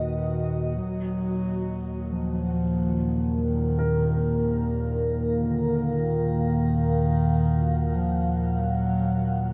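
Desolate and dark, this excerpt of a dark ambient drone moves at 46 BPM in Eb minor, anchored by a warbling, detuned analog drone up front with a filter sweep from 0.8 seconds, while a moody, sub-octave analog pad holds sustained chords under chorus and shimmer reverb. A close-miked bass clarinet carries the solo melody with shimmer reverb and delay, a reversed, granular swelling texture glimmers briefly in the background until 0.9 seconds, and a mellow concert grand piano enters with arpeggios at 3.8 seconds. A huge ambient reverb envelops the piece as the harmony settles from B onto Ebm.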